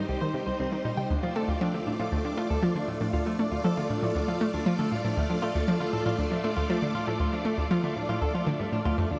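An analog pluck carries the riff in the low register, its detuned sawtooth and square tones edged with a noise layer, fast attack and short decay, bright and up front through chorus and delay. Above it, a phased string machine holds sustained chords with a slow attack, its vintage, swirling sound thickened by ensemble chorus, phaser and shimmer reverb. A clean electric guitar, recorded direct, picked and compressed, plays arpeggios through delay and its own shimmer reverb. All three parts play together throughout this short cut from a longer piece of sequencer-driven space music in a straight 4/4. The dark, warm production sits in a huge ambient reverb with a 7.4-second decay, giving the whole a cosmic, expansive mood.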